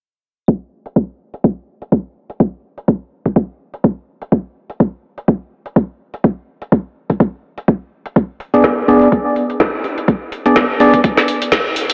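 An overdriven, knocking electronic kick and an up-front garage kit of woody snare and metallic hats open this aggressive, swaggering bass house cut at 125 BPM with a 16th-note swing, a filter sweep running throughout, before a hollow, dark, percussive organ stab enters at 8.5 s on a G#dim chord, colored by chorus, delay and sidechain pumping, all bathed in a lush hall reverb and pressed into a dense, heavily limited modern master.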